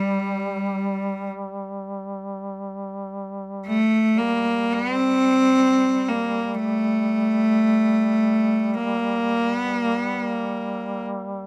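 A bowed cello and a duduk's sustained G3 drone open together in this solemn, mournful Caucasian folk lament in G minor, played in free time and tuned to A4 = 439 Hz. The cello, played by a single performer, sits up front with a biting, nasal, earthy tone and light vibrato as it carries the melody between G3 and C4, while the duduk's smooth-topped, folk-style drone rests quietly beneath. Heard under light reverb in an open-air recording, the fragment lets the duduk linger alone after the cello stops at 11.0 seconds, until it too ends at 11.5 seconds.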